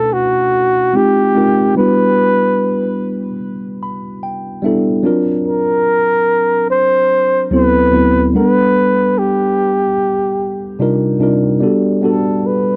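A breathy flugelhorn and a tine electric piano open this smooth, late-night R&B fragment together, moving at a relaxed 73 BPM in 4/4 with a gently swung sixteenth-note feel. The flugelhorn carries the jazz-style solo melody between F#4 and C5, its mellow, whispered tone shaped by vibrato, a soft attack and a smooth top, sitting intimate and up front. Beneath it, the electric piano spans D2 to B5 with a worn, slightly out-of-tune character, clean and direct through a phaser, and steps forward with a fill from 3.4 to 5.0 seconds. The harmony drifts through rich extended chords such as Bm11, Em9, D7alt and Gmaj9 before a new section begins at 11.6 seconds, returning to Gmaj9. The dry, close 1970s-style studio sound carries a light reverb, and the passage is cut from a longer piece.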